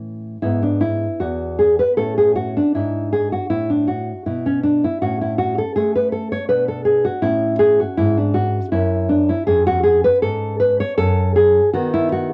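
A lone nylon-string guitar, dark, full-bodied and up front with thumb-plucked tones and an audible finger squeak, opens this flowing, serene baroque-style classical dance in three with a gently rubato feel, its phrases moving through chords such as E/G#, G#m7b5, Bm7 and C#/E# before this fragment of a longer piece breaks off on B/D# at 12.3 seconds, all set in light reverb with the character of a home cassette recording.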